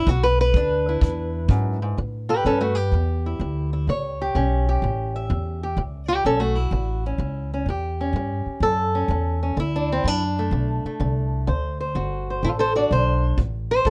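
Acoustic country blues with a gritty, rollicking swing, this short excerpt places a fingerpicked, ladder-braced acoustic guitar up front, its old strings dark and boxy as it carries the melody over a thumpy, gut-strung pizzicato upright bass, while a punchy brushed kick drum sounds only until 1.6 seconds and again from 13.4 seconds, all recorded close and dry as the chords move from E7 to A7 to D7.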